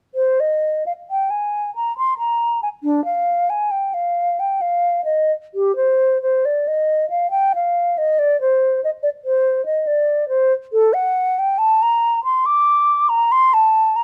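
A solo concert flute opens at 0.1 seconds and carries the whole 14-second passage alone, its hollow, pure tone sitting up front with soft attacks and a gentle vibrato. This is a baroque-style classical fantasia in C minor, grave and solemn in mood, moving at about 68 BPM in 3/4 with uneven, rubato beats that give the line a free feel. The flute ranges from D4 up to D6, and its rolled-off highs lend the sound a mellow quality. Close, detailed microphones catch the instrument intimately, framed by light reverb, and the flute is tuned to A4 = 439 Hz. The passage is cut from a longer piece and ends at 14.0 seconds.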